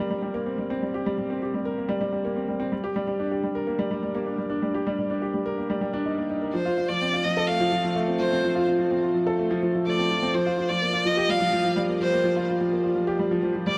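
A woody upright piano with audible action noise and long sustain opens this melancholic, intimate electronica fragment in G minor at 126 BPM, playing a delayed riff through a huge ambient reverb, and is joined at 6.5 s by a clear, bowed solo violin with vibrato that carries a smooth, even melody over chords moving from F to Gm7.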